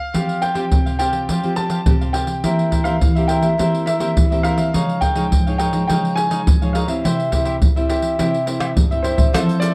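Playful and lively, this short samba and choro passage sets a baby grand piano melody with a long, open sustain over a crisp, picked cavaquinho and a fingerpicked classical nylon-string guitar. A tight surdo, pandeiro, tamborim and egg shaker sit up front with a small-room feel, and a drum fill arrives at 8.6 seconds before the cut. The production is dark and warm, with moderate studio reverb, and the chords move from Fsus2 through C7/E and Dbadd9 to C.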